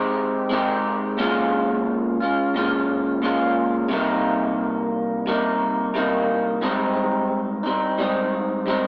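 A lone electric guitar played through a small old amp opens this short indie pop clip and carries it alone from 0.0 to 8.9 seconds. The mood is dreamy and nostalgic, with a straight feel in 4/4. The picked guitar sits up front with a bright, twangy tone that is slightly broken-up, colored by a subtle chorus and a vibrato effect. Moving through Abmaj7, Bbm7 and Cm7 before returning to Abmaj7, its part covers a range from Ab2 to G4. A moderate spring reverb and a small-speaker character give the sound a vintage intimacy, and the clip is cut from a longer piece.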